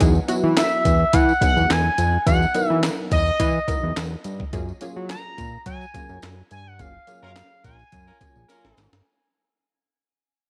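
A funky, nasal polysynth comp, a fat, detuned analog bass, a gritty, compressed breakbeat kit with thumpy kick and handclaps, and a jingly tambourine in the background open this danceable, feel-good early-eighties boogie funk fragment. A smooth, expressive synth lead with vibrato enters at 0.6 seconds, a very quiet horn section arrives at 7.2 seconds during a band accent, and a drum fill closes it under a fade-out in light reverb.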